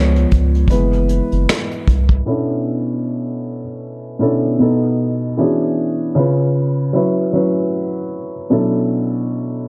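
A muted, mellow felt-dampened upright piano with audible action noise and cassette-tape haze carries this nostalgic lo-fi hip hop excerpt at 77 BPM in B dorian, joined until 2.2 s by a deep, round dub sub bass and a vintage brush kit of finger snaps, hi-hat, tight kick and snare with a rolled-off top, after which the piano continues alone through a filter sweep from 2.3 s over jazzy chords like Bm11 and E13 in a dark, lightly reverberant small room.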